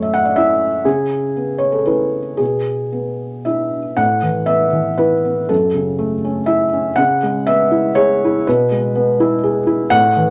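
A felt-muted upright piano opens alone on an F#m7 chord, its soft, mellow tone placed up front and close. This is neoclassical minimalist piano in 3/4, played with a rubato feel and tuned to A4 = 436 Hz, giving the short passage an intimate, tender mood. The first phrase moves from F#m7 through C#m7 to E7/B, and at 4.0 s a second passage begins on Asus2 before circling back through F#m7, C#m7 and E/B. The piano covers a range from F#2 to F#5, and its thick felt lends every note a muted, cushioned character. A moderate studio reverb adds a little air around the instrument in this short extract from a longer piece, which ends at 10.3 s.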